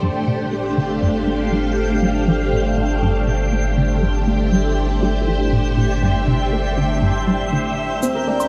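Ambient, sequencer-driven space music in G dorian at 120 BPM, this expansive, mysterious excerpt rests on a lush, up-front string machine holding a Gm7 chord through phaser and ensemble chorus, over a round analog bass and a juicy, squelchy resonant blip pluck riff, run through chorus, phaser and tape echo, whose filter sweeps across the whole span. A twinkling granular texture enters at 0.5 s with octave-up shimmer in its own built-in reverb. Near the end a soft octave-layered synth lead with vibrato and tape-warm cabasa and woodblock arrive at 8.0 s, followed by a thumb-plucked Celtic harp arpeggio at 8.2 s. The dark production sits in a wet concert hall reverb.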